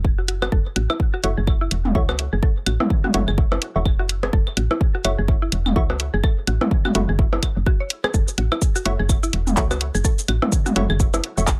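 A dry, close-sounding cut from a longer minimal techno track in F# minor at 126 BPM with a 58% swing on the 16ths, quirky and sparse over a single F#m7 chord, where a punchy electronic kick and a house kit of bright hats, handclaps and cabasa sit up front beside a soft, round, dark FM bass pumping under sidechain, while a woody mallet-like pluck with chorus and dub echo enters at 0.2 s, delayed percussion blips, claves and toms recorded in a small room follow, and a crisp, detuned, wave-folded wavetable chord stab with delay arrives at 1.2 s.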